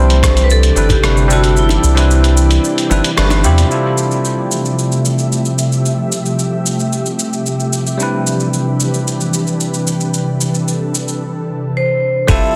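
Drenched in a wet concert-hall reverb and pressed into a dense, heavily limited modern master, this smooth, blissful sunset chillout fragment is cut from a longer piece and floats in straight 4/4 over chords moving from Cmaj9 to Fmaj9. An ethereal, airy pad of detuned saws and triangles holds sustained chords up front with ensemble chorus, while a bell-like, bright tine electric piano plays clean, direct accompaniment through tape echo. A metallic, ringing vibraphone, struck with hard mallets with its motor off in a boxy small room, carries the melody through a delay. Underneath, a round, deep analog bass with a dark filter sweep sits forward, joined by a dusty, gritty sampler-style soul kit of hi-hat, rim click and shaker with soft clipping on the snare, a thumpy electronic kick that drops out at 1.6 seconds, and very quiet, low-tuned acoustic bongos. The band lands an accent at 3.2 seconds, and at 12.3 seconds a buzzing, woody kalimba gives a short, dry thumb-plucked arpeggio.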